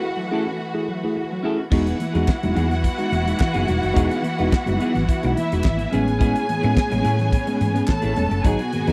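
Glamorous and celebratory, this excerpt from a longer disco piece in E major moves at 107 BPM, opening with a brief break where a lush, vibrato-rich violin section carries the second line over a worn, slightly out-of-tune tine electric piano, a clean picked semi-hollow guitar tucked in the background, and a distant, smooth studio string section holding sustained chords on F#m7. At 1.7 seconds the groove arrives as the harmony shifts to Emaj7 and later Amaj7: a dry, up-front 70s drum kit with a fat snare, tight kick, dark cymbals and hi-hat drives the beat, while a round, punchy hollow-body electric bass anchors the low end. Very quiet high-tuned congas with a vintage, band-limited tone and, from 2.3 seconds, crisp group handclaps add percussion, all captured in a close, dry 1970s-style studio sound.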